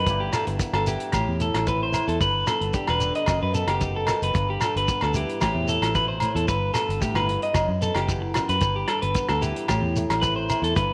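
A straight, danceable highlife groove is carried by a dry, tight-kicked soul drum kit with hi-hat and rim click, a round foam-muted fingered bass, grainy shekere and ringing agogo bells, while a flamenco guitar fingerpicks the accompaniment and an up-front, slightly broken-up electric guitar spins compressed arpeggios through spring reverb and slapback echo over a cycling Em/G, Am, G, B/F# progression in this brief, warm excerpt cut from a longer piece.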